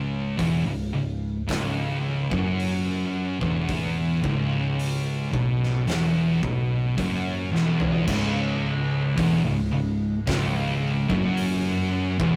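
A thick, up-front fuzz guitar grinds out a dark riff in C# minor at a crawling 55 BPM, joined by a second fuzz guitar sitting in the background and a growly, foam-muted picked bass, while an oversized low-tuned drum kit with a boomy kick, fat snare and dark cymbals enters at 0.4 seconds and plays a fill from 7.5 to 8.1 seconds before the section changes, giving this ominous, hypnotic stoner-doom metal excerpt the warm saturation and light reverb of a rough rehearsal-room recording.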